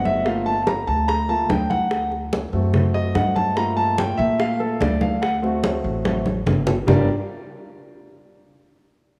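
A vintage, intimate grand piano with audible action noise opens at 0.0 s, taking the solo role over a dark, woody pizzicato upright bass as the chords alternate between Gm7 and D7. Ringing congas and tight, high-tuned bongos join this driving, sultry Afro-Cuban jazz cut, with piano and bass sitting up front in a dreamy mix soaked in plate reverb. A drum fill arrives at 6.1 s before the music moves into a new section at 6.9 s.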